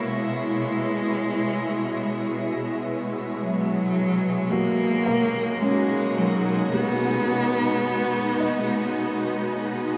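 Luminous and peaceful, this ambient passage, cut from a longer piece, moves at an unhurried 54 BPM in 3/4 with a straight feel. Up front, a single bowed cello carries the melody with a rich, expressive tone, vibrato, soft attacks and portamento glides, set in a diffuse ambient delay until it stops at 9.5 seconds. Beside it, a bright, shimmering pad holds sustained chords, its detuned sine tones swelling in on slow attacks and lingering on long releases, with chorus, an octave-up shimmer and granular grain. From 4.5 seconds a felt-muted upright piano adds soft, mellow arpeggios in the background, intimate and natural, with audible action noise and the same diffuse delay. High above, a faint twinkling FM granular texture sparkles and fades out, while the harmony shifts from C#m7/B to G#m7/B at 3.4 seconds, all bathed in a wet shimmer reverb with a 7.9-second decay.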